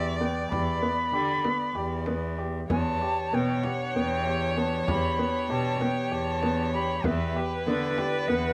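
An airy metal flute carries the melody in this pensive, hypnotic chamber piece, its vibrato and crisp chiff heard from a slight distance. Set in 7/8 at 193 eighth-note beats per minute with a straight feel, this brief cut from a longer work rests on a G6/E harmony. A nasal, focused viola plays a second line beneath the flute, while a felt-muted upright piano adds soft, intimate arpeggios. A bowed cello with a reedy, gut-string tone sits up front on the bass. A dry frame drum enters at 0.5 seconds and stays in the background, and at 2.7 seconds a very quiet studio string section joins with sustained, earthy chords that carry a biting edge. The sound is captured with close, detailed microphones in light reverb.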